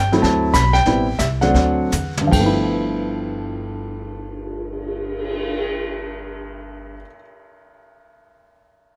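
Sophisticated and swinging, this brief excerpt cut from a longer jazz piano trio piece in G mixolydian moves at 143-201 BPM in 4/4 with a swung eighth-note feel, slowing down over its opening 2.3 seconds. A polished, up-front baby grand carries the melody from G2 to B5 over a woody pizzicato upright bass, while a distant, roomy brush kit with dark cymbals, a high-tuned snare and a punchy kick plays until 5.6 seconds. After a D7, Am7, D7 progression, a drum fill at 1.9 seconds leads into a G13 chord, all set in light reverb.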